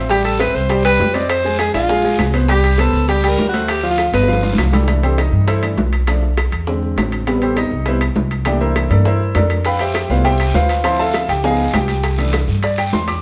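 A straight 4/4 Afro-Cuban jazz groove, danceable and sophisticated, is driven by tight, high-tuned bongos set back in the mix, ringing metal-shell timbales and a raspy guiro, under a woody, growly pizzicato upright bass up front. An edgy alto saxophone carries the opening melody with light vibrato and scooped notes until a drum fill at 4.1 s, after which the intimate concert grand piano, with its audible action noise and deep low end, takes a solo from 4.9 s over rich extended harmony. The guiro drops out during the solo and returns at 9.6 s, and the whole band plays live in a stone room with a wet reverb.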